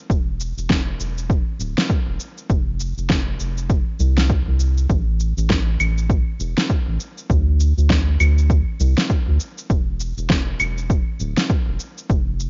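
A round analog bass, a punchy electronic kick and a fat electronic snare with shaker and claves all start together at 0.1 seconds, setting an earthy, hypnotic groove of organic downtempo in A minor at 100 BPM with a lazy swing on the sixteenths. The deep, dark bass blends square, sine and triangle tones with a wave-folded edge and a fast attack, sustaining low under sidechain pumping, while the overdriven, layered drums sit up front with a cassette-tape grit. The dry home cassette recording dulls the top end, and this short cut from a longer piece runs about 12.5 seconds.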